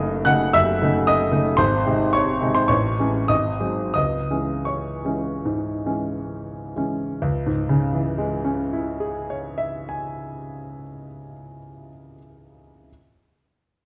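In a rubato 4/4 that ranges between 62 and 118 BPM and slows down from 0.5 to 7.2 seconds, this bittersweet, brooding romantic character piece for solo piano unfolds in C# minor before shifting to a new passage. The grand piano sounds clear and worn, with a short sustain, sitting up front as it spans from deep bass to high treble, and its harmonies move through A major seventh and G# dominant to settle on C# minor at 4.0 seconds. A wet recital hall reverb surrounds the piano in this brief excerpt cut from a longer work.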